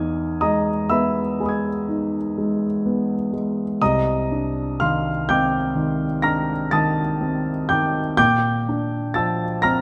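Luminous and hazy, this impressionist classical piece for solo piano drifts at a slow 41 BPM in 9/8, with a free, rubato feel. A concert grand carries everything alone from 0.0 to 9.8 s, spanning C2 to Bb6, its tone intimate and natural with a deep bass and the audible noise of its action close at hand. The instrument sits up front, wrapped in a moderate scoring-stage reverb with a 1.9-second decay that adds a soft glow around the notes. The harmony moves from Emaj7 to a dusky Cm9 at 3.8 s before arriving on Bb at 8.2 s, a shifting, colouristic progression. Cut from a longer piece, this short passage feels like a suspended moment rather than a complete statement.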